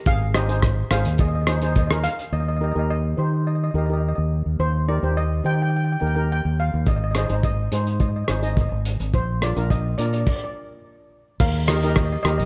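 Calypso in Eb major at 106 BPM, sunny and bouncy in a straight 4/4, with two steel pans, one on shimmering accompaniment struck with hard rubber sticks in a boxy small room and the other carrying a mellow, soft melody with soft rubber sticks, over a round, up-front fingered electric bass and a cloth-damped, thuddy drum kit with a tight kick, dark cymbals, rim clicks and gritty, muffled lo-fi saturation that drops out from 2.3 to 6.9 seconds before a stop from 10.3 to 11.4 seconds, all under light reverb in this excerpt from a longer piece.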